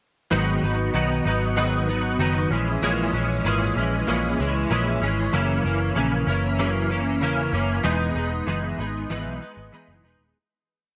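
Indie bedroom pop with a lonely, hazy mood, where a bright, twangy twelve-string electric guitar strums eighths in barre chord shapes up front through ensemble chorus and vibrato, a dark, foam-muted vintage picked bass carries a round, melodic line with chromatic approach notes, light reverb surrounds the verse as it moves from G#m7 to Emaj7, and a fade-out runs from 7.8 to 10.4 seconds.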